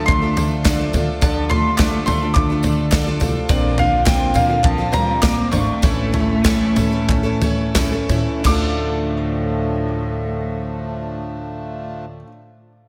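A big, arena-scale sound frames this cut from a longer indie folk piece, set in a moderate scoring-stage reverb with studio ambience. In D minor and a straight 4/4, it moves between 84 and 106 BPM, slowing from 3.5 to 8.4 seconds as the chords pass from Dm through Bbadd9 and A before returning to Dm, and the mood is yearning and stirring. A mellow, round mandolin carries the melody through digital delay, over a warm, bowed solo cello with vibrato playing a second line, a bright, shimmering octave-doubled twelve-string guitar picking the accompaniment, and a reedy, breathing pedal harmonium holding chords in the background. A clear, intimate upright piano with audible action noise adds arpeggios through slapback echo and digital delay, while a woody, thumpy pizzicato upright bass anchors the low end. An up-front acoustic drum kit with a punchy kick, snare, toms and crash drives the building arrangement alongside very quiet, crisp handclaps and jingly tambourine, and all three percussion parts drop out by 8.8 seconds, leaving the strings, keys and bass to close the passage.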